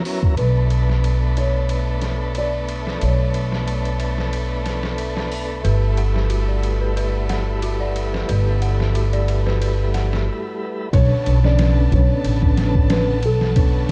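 A woody, up-front pizzicato upright bass anchors this dark, hypnotic trip hop excerpt at 91 BPM in B minor, moving with a light sixteenth-note swing over Bm9 and G69 chords. A compressed, pitched-down sampler-style drum kit sits beneath it, with a thumpy kick, a medium-tuned snare, and muffled hats and ride thinned by high-pass filtering. A clean tonewheel organ with audible key click churns through a fast rotary speaker, tremolo and tape echo, while a clear, biting violin section holds sustained chords in the background. The soft, felt-muted upright piano carries the melody with dub echo, steps aside at 5.3 seconds for an eerie, warbling FM bell playing detuned arpeggios through chorus, phaser and tape echo, then returns after a short break at 10.9 seconds. A small room, vinyl crackle and a dark, warm production finish the sound.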